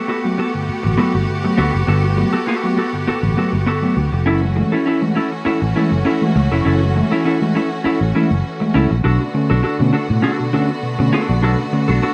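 A straight 4/4 funk groove sets a cool, hypnotic mood in this short cut from a longer piece, with a punchy, amped fingered electric bass up front from 0.7 s. Beside it, a dark, compressed clean electric guitar plays picked accompaniment, while a mellow tine electric piano adds stabs and a lush, bowed string section holds smooth chords with vibrato over harmony that moves from Gmaj9 to F#m7 and settles on Bm7 at 9.0 s. Digital ambience wraps the whole in a rough home-demo sound.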